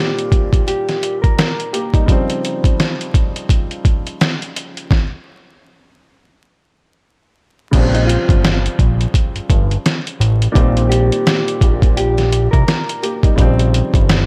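Moody and gritty, this boom-bap hip-hop cut moves at 85 BPM in 4/4 with a loose 16th-note swing, set in Bb dorian and taken from a longer piece. A dark upright piano carries the accompaniment throughout, its woody, intimate tone colored by cassette tape and filtering, with audible action noise adding a vintage character. A mellow electric guitar plays the clean, fingered melody, filtered and touched with digital delay, appearing at the start and again from 7.9 seconds. The sampler-style drum kit, compressed, pitched down and muffled, sits up front with a thumpy kick and medium-tuned snare, hi-hat and crash, breaking over the opening chords before a stop where the harmony drops out. At 7.7 seconds a fat analog bass enters, thick and detuned with sawtooth and square-wave color and a moving notch, anchoring the Bbm69 and Cm7/Bb changes. Vinyl crackle hangs over the dry, close sound.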